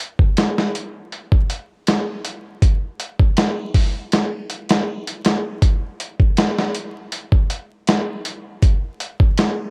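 A worn, warbling old-tape sound with a cassette-tape character, vinyl crackle and a drifting pitch wraps this short trip hop excerpt in light reverb, setting a hypnotic, smoky mood at 80 BPM in a straight 4/4. The only part is a dusty, soul sampler-style drum kit of kick, snare and hi-hat, playing from 0.0 to 9.6 seconds, compressed and overdriven, with a thumpy kick and a medium-tuned snare. Gritty and sitting up front, the kit sounds as if it was re-recorded in a small room.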